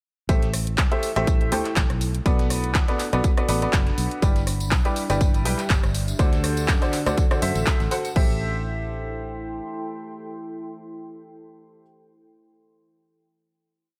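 Soulful and energetic, this short piano house piece sets a clear, woody, slightly detuned upright piano chord riff with digital delay and sidechain pumping over a round, foam-muted fingered electric bass, a punchy, overdriven four-on-the-floor electronic kick, an overdriven house kit of claps, hats, rim clicks and crash, a gritty looped breakbeat from a dusty soul sampler-style kit, and a tambourine in the background from 4.2 seconds. The drums drop out by 8.3 seconds, and the bass lingers until 9.6 seconds while the piano and a deep, moody sawtooth pad with chorus and reverb hold the closing Am7, the piano ending at 11.8 seconds and the pad at 12.0.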